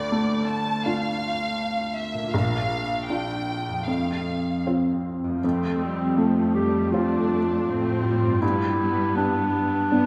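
This is an emotional, cinematic film score for orchestra, hopeful and moving, in F major at a rubato 80 BPM in 4/4, cut from a longer piece. A felt-muted upright piano sits up front throughout, soft and intimate with audible action noise, while a concert harp rings out mellow fingerpicked arpeggios in the background. A lush violin section carries the melody with focused vibrato and a smooth top until 4.7 seconds, over harmony moving from Dm to Bb to F. At 5.4 seconds the phrase begins again with a clear, classical-style solo clarinet taking a second line, joined by a bowed viola section in the accompaniment and a close cello section playing the bass, with a G chord arriving later. A concert hall reverb wraps the ensemble in a generous, enveloping space.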